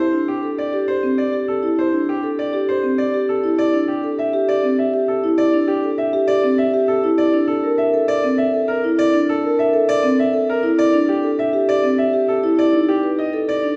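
A mellow, round marimba played with soft mallets sits close and dry at the front, spinning arpeggios between C4 and B4 for the whole of this passage cut from a longer piece. Above it, a concert grand piano carries the melody from G4 to E5, its tone brilliant and open with a deep bass, and it also sits up front though a little lower in level than the marimba. This is minimalist classical pattern music in 3/4 at 100 BPM with a straight feel, and its repeating figures give it a hypnotic yet urgent mood. The harmony rests on C69, moves to Bbmaj9 at 7.2 seconds, returns to C69 at 10.8 seconds, and turns to B7#9 at 12.6 seconds. The recording places the listener further back in a wet scoring stage with a reverb time of 1.8 seconds.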